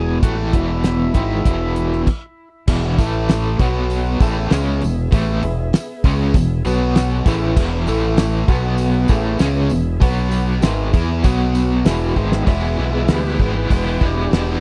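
A gritty, overdriven tonewheel organ opens this confident, swaggering classic rock passage in E major at 98 BPM, its short melody colored by a slow rotary speaker and tape echo. Underneath, a crunchy overdriven guitar with tremolo and a compressed, distorted electric guitar play riffs, a growling fingered bass with overdrive sits up front, and a very quiet jumbo acoustic guitar adds picked accompaniment with audible finger squeak. A cloth-damped, thuddy drum kit comes in almost at once, with a fat snare, a tight kick and dark cymbals. After a full stop at 2.1 seconds, the band returns at 2.7 seconds, now joined by a barky, reedy electric piano with fast tremolo and a jingly vintage tambourine, and from 3.0 seconds a very quiet, thick tonewheel organ holds sustained chords over the E, A5 and B5 changes. The electric piano plays a fill midway, the drums play a fill before the acoustic guitar reappears at 12.5 seconds, and the dry, close 1970s-style studio sound keeps the parts tight and present in this passage cut from a longer piece.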